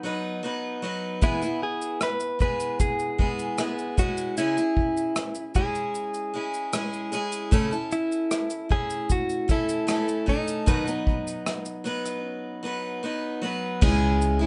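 A bright, picked parlour acoustic guitar sits up front with a clean, compressed electric guitar recorded direct carrying the melody from the start of this carefree, sunny acoustic pop excerpt, moving at a relaxed 76 BPM in a straight 4/4 through B, E, C#m and A/C#. An unplugged studio drum kit joins at 1.2 seconds with a punchy kick, rim clicks, shaker and crash played with bundle sticks, before a break from 12.2 seconds. A growly, round, hollow-body fretless bass arrives only at 13.8 seconds on a C#m chord, all captured as a band playing live in one room with light reverb and a soft, rolled-off top end.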